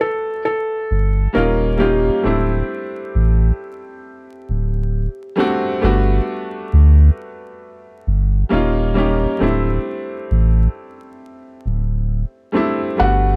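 This lo-fi hip hop excerpt drifts along at 67 BPM in 4/4, with a gentle swing on the sixteenths and a mellow, dreamy mood. A clear upright piano with a woody, vintage tone carries the accompaniment throughout in its middle register, its short sustain softened by a low-pass filter. Above it, a felt-muted upright piano sings a soft, intimate melody that plays until 5.3 seconds, then returns for a brief moment near 13.0 seconds, also filtered and close up front. A deep, round sub bass enters at 0.9 seconds with a fast attack and sustained, sine-like body. The harmony cycles through Gmaj9, Eb9 and D7sus4, framed by light reverb, dark, warm production and a bed of vinyl crackle.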